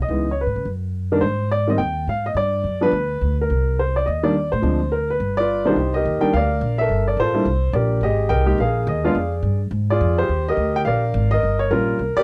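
An upright piano carrying the melody and a woody, pizzicato upright bass on steel strings sound together from the first moment of this smoky, cool swing jazz trio excerpt, both up front in a dry, close 1970s-style studio sound, the piano's natural tone ringing with long sustain through rich seventh and extended chords that shift into a new section at 5.8 seconds.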